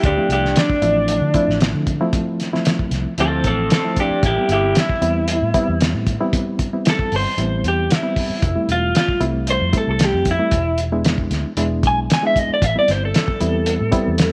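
Straight-eighth soul blues with a soulful, smoky mood, this short cut from a longer piece moves at a steady 114 BPM in 4/4. An electric guitar through a small old amp carries the melody as a clean solo across the whole span, its picked tone slightly broken-up, compressed and up front, colored by a phaser. Beneath it, a reed electric piano supplies reedy, worn accompaniment with a fast tremolo, sounding slightly out of tune through its built-in speakers. A vintage muted fingered electric bass holds the low end with a dark, round, foam-muted tone, while a cloth-damped drum kit of hi-hat, kick and snare sits up front with a thuddy, muffled, gritty character, a fat snare and a tight kick. The harmony moves from Dm7 to Am7, then through Fmaj7 and E7 before settling back on Am7 at 12.6 seconds, all wrapped in light reverb and studio ambience.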